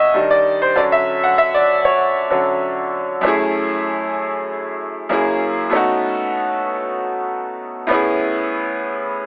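Heard through a narrow, telephone-like filter and set in a moderate echo-chamber reverb, this short soul piece, cut from a longer work, carries a cinematic, bittersweet mood at an unhurried straight four-beat pulse. A concert grand piano plays alone from start to finish, sitting up front in the mix with a brilliant upper register and a deep bass that reaches down to F#2. The opening passage drifts from D#maj7 to Dmaj7 before a new section begins at 3.2 seconds on F#m7. From there the harmony moves through F#7 and B7 and settles on Amaj7 at 7.9 seconds, giving the lush seventh chords a tender, wistful color. Despite the filtered sound, the piano keeps a natural tone, and the reverb's tail lends the brief recording a haunting, faraway quality.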